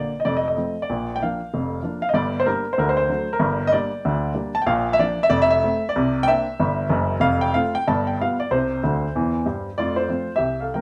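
Playful and swinging, this brief stride piano passage moves at a brisk 189 BPM in 4/4 with a swung eighth-note feel, settling into F major from 4.7 seconds. A lone baby grand piano carries it all, its warm, present tone sitting up front with short sustain and spanning from deep bass notes to high upper registers. Moderate studio reverb gives the live-room sound some air, and a piano fill at 8.8 seconds leads into a new section at 9.8 seconds.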